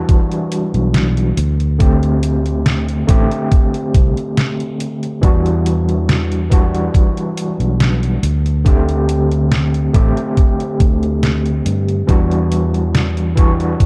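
A dark, warm digital ambience frames this melancholic, woozy vaporwave excerpt, cut from a longer piece and moving at a slow 70 BPM in straight 4/4. Up front, an overdriven tine electric piano carries the accompaniment with a bright, barky, gritty tone through a combo amp, colored by medium tremolo, lush chorus and tape echo. It drifts between Em9 and D7sus4 chords. Beneath it, a sustaining fretless electric bass adds a growly, amped low end with tube saturation. The thumpy electronic kick sits prominently in front, while a detuned 8-bit digital drum machine supplies tape-warm hi-hat and a medium-tuned snare, both kick and machine dressed in studio reverb. All parts play together from the opening moment to about 13.9 seconds, with the bass stopping just short at 13.7 seconds.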